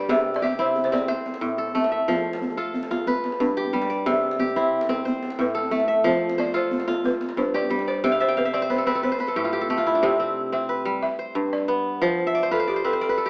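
Heard through a rough home demo mix with a small-speaker quality, this fragment of a longer West African string and xylophone piece sits in a lush hall reverb that lends it a spacious glow. The mood is warm and flowing, moving in a straight 12/8 at 121 beats per minute in C major. Up front, a crisp, ringing, fingerpicked kora carries arpeggios across a broad range from start to finish, adding fills toward the close of each section. A woody, dry balafon played with rubber mallets gives a buzzing, airy melody that drops out briefly and returns at 5.4 seconds. Further back, a deep djembe struck with hard hands and fitted with metal rattles sounds distant, as if in a large room, until 9.9 seconds. The harmony cycles through C, Am, F and G, lands on a lush Cmaj13 and a brief chordless moment, then shifts into a new section at 10.0 seconds that ends on a bare F5.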